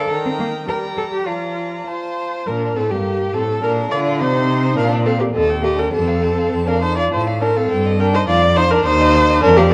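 In a straight 2/4 at 103 BPM, this spirited, graceful passage from a quick classical-period string quartet movement in Bb major, tuned to A4 = 435 Hz, sets a smooth first violin played with vibrato on the melody over a more distant second violin line, a rich viola accompaniment and a focused cello bass, both up front, all bowed and heard throughout the 9.7 seconds as harmonies move from Eb through Bb, Cm and F, bathed in a recital hall's reverb and colored by worn, warbling cassette tape with drifting pitch.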